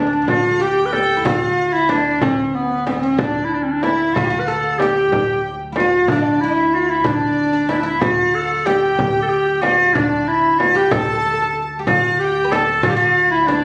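Captured on a phone inside a room, the recording carries a moderate stage-like reverb around an Arabic maqam ensemble in a straight 6/8, its mood warm and stately. Up front, a bright, punchy clarinet carries the melody with forceful, jazz-inflected phrasing, a light vibrato and a vintage edge. Behind it, a fretless oud, plectrum-plucked on double strings, traces a woody second line in the background. From 0.3 s, a chamber violin section joins with bowed, sul tasto playing and a soft attack that feels intimate and close. The same moment brings a small frame drum played with soft hands, dry and near. Beneath them, an upright bass on gut strings gives dark, thumpy pizzicato support throughout this passage cut from a longer piece.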